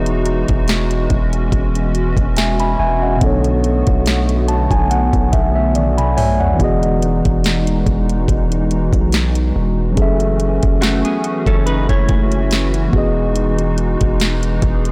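A mellow tine electric piano, a hollow, flute-like pad with ensemble chorus and a deep, sine-toned 808-style bass open this dreamy contemporary R&B excerpt in E major at 71 BPM, with a lightly swung 16th feel and chords moving between Emaj9, Bm7 and F#m7. A produced drum kit with a knocking kick, sharp snare and metallic hats sits up front alongside the bass, and the piano and drums each play fills, the piano's starting at 4.1 seconds. A clean, picked electric guitar recorded direct adds arpeggios through analog chorus and digital delay from 10.8 to 12.9 seconds, all within a blown-out, overdriven recording set in digital ambience.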